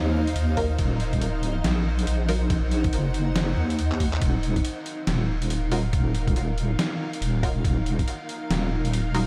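A swung, half-time 140 BPM groove in 4/4 drives this brooding, meditative deep dubstep excerpt in Eb dorian, built on a thumpy, pitched-down electronic kick and a gritty, tape-warm sampler-style kit of snare, handclaps, hi-hat and ride, with a short drum fill just before 4.2 seconds. Up front, a deep, dark wobble bass of detuned square and sine tones with chorus sits beneath a cloudy, evolving granular pad, while a flickering grainy texture hovers in the background until 4.2 seconds. Muted, detuned chord stabs with phaser and dub echo sit in the back, returning at 5.7 seconds, as the harmony shifts from Ebmadd9 to Ebsus2 under light reverb.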